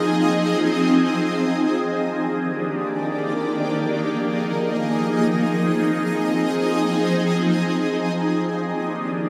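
A shimmering ambient pad carries this short hip hop fragment alone, floating in free time in F dorian with a spacious, ethereal mood. Its sound is bright and up front, built from unison triangle tones with an octave-up shimmer and a granular texture, each chord arriving with a slow attack and sustaining into a long release. Chorus, phaser, tape echo and the pad's own reverb color the tone, while moderate studio reverb adds a sense of air around it. The harmony drifts from Fm7 through Ebmaj7 and Bb7sus4 back to Fm7, then moves to a brief closing passage on Ebmaj7 at 8.3 seconds. The rough home demo mix gives this cut from a longer piece a loose, sketch-like quality.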